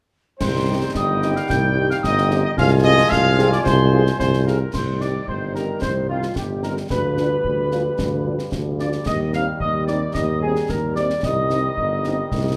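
In a straight 2/4 at 111 BPM, this stern, resolute C minor military-style march for wind band pairs a dark, punchy trumpet section on the melody with a hollow, pure wooden piccolo carrying vibrato and a mellow woodwind section on the second line, while a bright trombone section holds background chords, a distant French horn section accompanies from 0.7 s, a warm tuba sits up front on the bass, and close concert snare drum, clash cymbals and concert bass drum drive it all in a large studio reverb.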